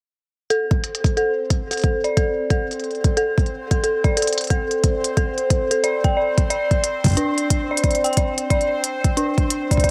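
Cerebral and melancholic, this excerpt of swung IDM at 90 BPM in A minor sets a dark, detuned FM synth bell playing eerie, inharmonic arpeggios up front from 0.5 seconds, chorused and tape-echoed as a filter sweep moves across it, while overdriven electronic hi-hats with smooth, filtered tops enter at the same moment. A soft, overdriven electronic kick drum sits up front from 0.7 seconds, and at 1.0 seconds a bubbling, resonant sawtooth texture with random filter steps rises in slowly, bright and sustained in its own reverb. The harmony moves from Am to Csus2 at 5.8 seconds, all within a light room reverb.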